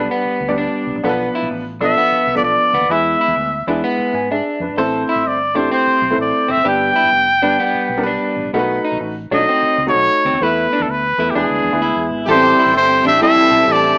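Driving and urgent, this swung soul excerpt in A minor moves at 128 BPM, with a worn, woody, slightly detuned upright piano, a dark, slightly broken-up guitar riff through a small old amp and a round, foam-muted electric bass beneath an up-front, smooth-topped trumpet melody that enters at 1.8 seconds, while a ringing, metallic vibraphone with fast motor vibrato, a punchy, distant horn section and lush bowed strings join in the background at 12.3 seconds, the mix sitting in a moderate echo-chamber reverb with a small-speaker sound.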